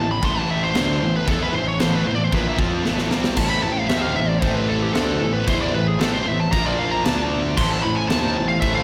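A high-gain lead guitar sits up front, soloing from G4 to C6 across this dark, aggressive heavy metal excerpt, backed by three picked rhythm guitars: a bright high-gain one and a tight distorted one in the background, plus a very quiet double-tracked sludgy one. A round, fuzz-drenched picked bass and a polished metal kit with bright cymbals, including china and splash, drive the music, with a drum fill at 2.9 seconds. From 3.4 seconds a very quiet nasal chamber organ cornet stop adds sustained chords, all of it bathed in a wet cathedral reverb and a rough rehearsal-room sound, as the harmony moves from Am through Bb5 and D5 back to Am.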